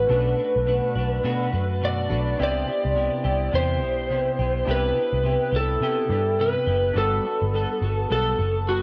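Indie pop at 105 BPM in C lydian with a swung sixteenth-note feel, laid-back and nostalgic, cut from a longer piece. An up-front electric slide guitar, played with fingerpicks, compressed and slightly broken-up, carries the melody through lush chorus and tape echo. Beneath it sit a round, punchy foam-muted picked electric bass, a dark clean electric guitar coloured by analog chorus and vibrato, and glossy pulse-wave and sawtooth retro synth keys in the background, as the chords move from Bm7 to Cmaj7 at 2.4 seconds and Gmaj9 at 7.0 seconds in a light-reverb home cassette recording.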